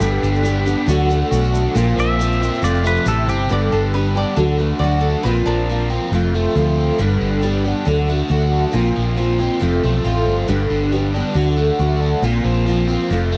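A twangy, compressed electric guitar opens this nostalgic, hopeful folk and heartland rock excerpt with a clean solo that ends at 3.5 seconds, while a grainy tube shaker sits in the background. Beneath it, a shimmering, octave-doubled twelve-string acoustic guitar with old strings and ensemble chorus, a biting double-tracked overdriven guitar riff, and a round, punchy hollow-body bass carry the G, D, Bbsus2 and F changes throughout. A bright, woody mandolin adds a second line from 3.5 to 5.9 seconds, all captured in a dry, close 1970s-style studio sound with small room ambience.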